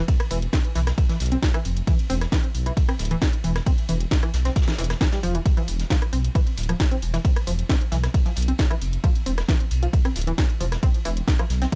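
Driving peak-time techno at 134 BPM in 4/4, this intense excerpt from a longer piece is built on an up-front, punchy electronic kick with a tape-warm analog edge and a deep, rumbling detuned saw bass that beats and pumps under tube saturation, over a single E5 chord. A layered, overdriven techno kit adds hi-hat, ride, rim click and a cracking snare, while a tight sequenced synth riff of sawtooth and square waves enters at 0.3 seconds with a mellow filter pluck, chorus, overdrive and analog delay. Deep in the background, a brushed acoustic jazz kit with dark cymbals and a medium-tuned snare sits inside a gritty hardware recording with digital ambience.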